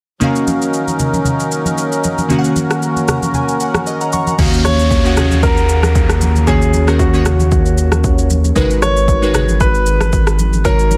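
Amapiano with a soulful, late-night mood, this short cut from a longer piece moves with a lightly swung groove. Glassy digital keys with chorus and tremolo carry the accompaniment up front throughout, and a reedy, sweet accordion holds sustained chords until 4.4 seconds, with a keys fill arriving at 2.8 seconds. The deep house drum kit is layered and overdriven, its punchy kick joined by crash cymbal, rim click and shaker, while congas with a thick skin sit in the background. At 4.4 seconds a saturated sub bass enters, deep and sine-like, alongside an electronic downlifter, and a polished grand piano with delay takes the melody from 4.6 seconds. The harmony shifts from Ebm7 to Abm7 late in the passage, all set in light digital ambience within a dense, heavily limited modern master.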